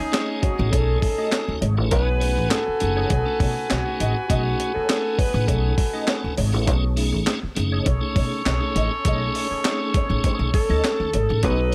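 Funk at 101 BPM in B mixolydian, this strutting excerpt rides a straight 4/4 groove over a B13 chord. A breathy alto saxophone carries the melody with light vibrato, sounding distant and roomy, dropping out at 6.4 seconds and returning at 10.5 seconds. Alongside it a bright, punchy horn section plays a tight second line, while a dark, clean electric guitar with wah sits in the background as accompaniment. A woody pizzicato upright bass sits up front, and a piping tonewheel organ adds overdriven stabs with chorus vibrato, key click and a slow rotary speaker. The sampler-style breakbeat kit is gritty and compressed, with a thumpy kick, medium-tuned snare, hi-hat and handclaps, all pushed up front in a dry room with little reverb.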